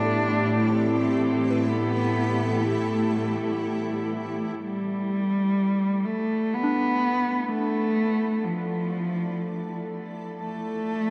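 A woody, up-front solo cello sings a vibrato-laced melody over a blurred, evolving granular cloud pad, a nasal analog drone, soft FM synth bell arpeggios and an earthy, biting cello section holding the bass on Am9, all bathed in a huge, dark reverb. This is a spacious, reflective ambient fragment at 62 BPM in 3/4. The cello section drops out at 4.6 seconds as the harmony moves to A9sus4 and the pad begins a fade-in, and the warbling bell stops at 9.1 seconds while the solo cello, pad and drone carry on through Dmadd9 to Bm7.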